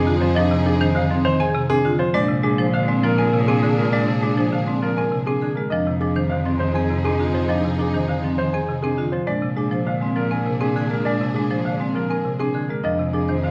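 From the first moment, a polished baby grand piano carries the melody over a buzzing, woody marimba accompaniment, metallic vibraphone arpeggios with a fast motor vibrato, lush bowed chords from a symphonic violin section and a rich solo cello bass in this meditative, hypnotic minimalist classical pattern piece at 101 BPM in 3/4 and F dorian, cycling between Fm7 and Bb7 in a moderate recital hall reverb with a dark production across a 13.5-second excerpt cut from a longer work.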